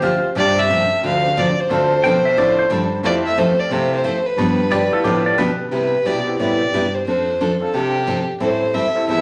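A dark, woody fiddle carries the melody in this swinging, down-home country piece, bowed up front with light vibrato and portamento. It is joined from the start by a twangy lap steel slide line, a full-bodied picked dreadnought acoustic guitar, and a breathy baritone saxophone playing the bass in a mellow, soft-attack subtone. The tune moves at 179 BPM in 4/4 with a swung eighth-note feel in C major, over jazzy chords such as G9sus4, Fmaj9, G13 and Cmaj7. At 0.4 seconds a brilliant, slightly detuned upright piano enters in the background, its worn, intimate tone carrying audible action noise and long sustain. The compressed, clean lap steel appears in two short spots, and a second section arrives at 5.7 seconds as the harmony shifts to Cmaj7, F6 and Am7. A wet studio reverb surrounds the ensemble in this brief cut from a longer piece.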